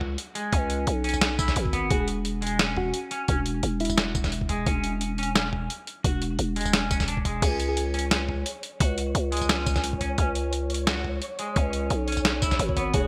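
A bright, 1980s-style digital production with light reverb frames this dark, spacious stretch of half-time drum and bass at 174 BPM in C# minor, cut from a longer piece. A growling, buzzy 808-style bass and a gritty, pitched-down boom bap kit with a medium-tuned snare sit up front, joined by a thumpy electronic kick at 0.5 seconds, while a twangy, picked clean electric guitar plays arpeggios through lush chorus and digital delay. In the background, a round, keys-like FM synth lead offers brief melodic touches starting at 1.9 seconds, and a flickering, granular texture with analog chorus drifts in at 7.8 seconds.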